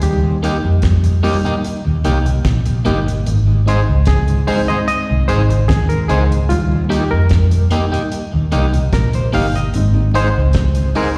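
A laid-back roots reggae groove in 4/4 moves at 74 BPM in Ab major, with a straight feel and an uplifting mood, cut from a longer piece. A damped 70s drum kit with a fat snare and tight kick sits alongside a dark, foam-muted, round fingered electric bass that stays up front from the start. A barky, reedy electric piano takes the solo throughout, playing stabs through its built-in speakers with light overdrive, fast tremolo, plate reverb and slapback echo. Just after, a mellow tonewheel organ with key click and a slow rotary speaker hangs in the background. A twangy, picked electric guitar at the edge of break-up enters at 0.4 seconds, colored by tape echo. The chords alternate between Eb and Ab, and the whole thing is heard as a live gig through the venue's PA, with recital hall reverb and vinyl crackle.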